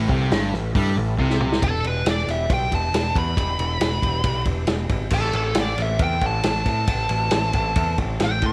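A smoky, heavy slice of blues rock and southern rock cut from a longer piece, recorded in a small room with a vintage acoustic drum kit up front whose tight kick, medium-tuned snare and rolled-off top sit beside a growling, overdriven picked bass and a bright, double-tracked fuzz guitar riff that plays until 1.6 seconds. A drum fill from 1.2 seconds leads into a dark, compressed fuzz lead guitar solo with wah, which carries the melody from 1.6 seconds to the end over Em and Am chords. Behind it all, a gritty overdriven tonewheel organ holds sustained chords in the background through a slow rotary speaker and chorus vibrato.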